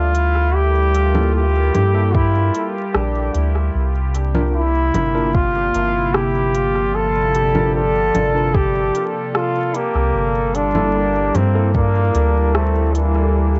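Ambient dub, meditative and hazy, cut from a longer piece: a bright, distant trombone carries the melody with light vibrato over a warbling, detuned tape-like pad and a deep, round sub bass, while congas, crisp hats and rim clicks from an organic electronic drum kit trail dub echo, a soft electronic kick joins at 2.1 seconds, and a worn, slightly out-of-tune electric piano adds lightly overdriven stabs in the background, all within a home cassette recording with vinyl crackle, light reverb and nothing above 7.7 kHz.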